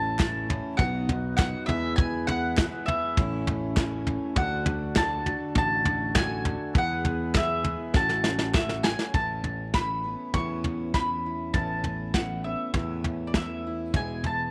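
A round, double-strung mandolin carries the melody up front in this anthemic, nostalgic indie folk excerpt in A major at 100 BPM, over up-front brushed drums with a tight kick, a direct electric bass, a bright picked auditorium acoustic guitar with finger squeak, a very quiet dark felt-muted upright piano with audible action noise, soft chiffing flute-stop pipe organ chords and very quiet crisp group handclaps, all in a small, lightly reverberant room; during a drum fill that begins at 7.9 seconds the handclaps stop at 8.7 seconds, and at 9.1 seconds the organ drops out as a full-bodied fingerpicked jumbo acoustic guitar joins in the background.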